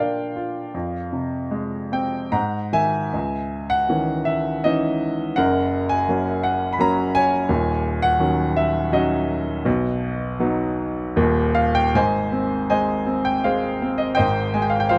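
Dark and reflective, this short lyrical classical excerpt, cut from a longer piece, features a clear, up-front grand piano alone, moving with rubato in 3/4 at 73-86 BPM from F dorian into C# dorian at 3.1 s, spanning D#1 to B5 and captured by close, detailed microphones in a dry, intimate sound.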